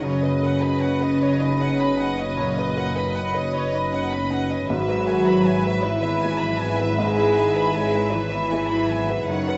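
Uplifting and tender, this short cinematic passage unfolds in 6/8 with a rubato feel, every part sounding from 0.0 to 9.6 s. A rich violin section carries the melody with light vibrato and an intimate sul tasto tone, while a second violin section adds a pure, floating line. Mellow French horns hold sustained chords as the most prominent voice, joined by a distant viola section resting on a single note, a dark cello section in the background, and a double bass section anchoring the low end. A warm grand piano with deep bass accompanies from the background, and a very quiet concert harp adds ringing, fingerpicked arpeggios. The harmony moves from Badd9 over F# to E over G# at 4.7 s, set in the wet reflections of a stone room with a gently rounded top end.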